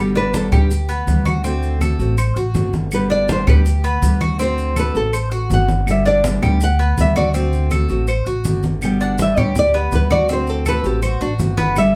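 Heard as a band playing live in one room with a wet studio reverb, this relaxed Cuban son and guajira passage, cut from a longer piece, sets a small, up-front, fingerpicked nylon-string guitar solo over a second, full-bodied nylon-string guitar with a deep classical tone that moves between G and D7. The solo guitar drops out at 0.7 seconds and returns at 2.9 seconds, while a thumpy, woody pizzicato upright bass sits up front and a metallic, double-strung Cuban tres picks arpeggios. Bright, low-tuned congas played with soft hands enter in the background alongside grainy, mellow maracas, and compressed, saturated claves join them in the background shortly after.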